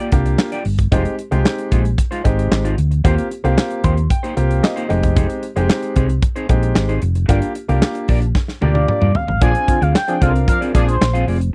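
Early-eighties boogie funk at 113 BPM, slick and danceable, built on a round, dark hollow-body fingered bass and a punchy, up-front studio drum kit with handclaps, hi-hat, snare and toms, while a clean electric guitar riff shimmers through lush chorus over Gm7 and Fm7 chords and an intimate baby grand piano, its action noise audible, comps and adds a fill at 3.6 seconds; during a drum fill, a smooth, expressive synth lead with vibrato, chorus and slapback echo takes the melody at 8.6 seconds, joined at 9.4 seconds on a Bb9 by a fat, brassy, detuned sawtooth synth brass line with a filter sweep, all captured in a dry, close 1970s-style studio sound, in a short cut from a longer piece.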